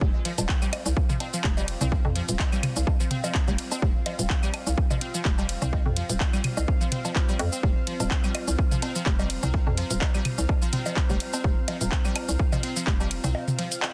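A punchy, overdriven electronic kick and a hollow, bouncy FM bass open this clinical, hypnotic slice of minimal techno, the bass knocking in the low register and pumping against the kick. A very quiet, bubbling texture of random filter steps sits high above on a single sustained note, while a warbly, lo-fi tape-like pad drifts in the background with chorus, phaser and its own reverb, carrying a nostalgic haze. From 0.3 seconds a juicy, squelchy blip pluck with a nasal, resonant filter sweep adds a riff, sweetened by subtle chorus and digital delay, and an overdriven house kit of handclaps, hi-hat, ride cymbal and shaker arrives alongside. Electronic bongos, woodblock, claves and toms with an analog grit follow at 0.4 seconds, sounding as if re-recorded in a small room, whereas the kick and house kit carry the air of a large one. The groove swings lightly on its sixteenths, and the dense, heavily limited master keeps the kick and bass up front under light reverb.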